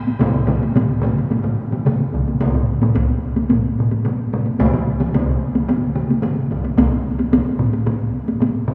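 A taiko drum ensemble struck with hard sticks opens this driving, ceremonial cut from a longer Japanese traditional piece in straight 4/4, one layer close and dry up front and another close beside it. Two more taiko layers fill out the sound, one set in the background in a small room and one heard at a distance in a large room yet still forward, and the passage shifts into a new section at 2.4 seconds. The whole space carries a long, wet cathedral reverb; the quietest layer stops at 6.6 seconds while the others drop out one by one at 7.4, 8.5 and 8.7 seconds.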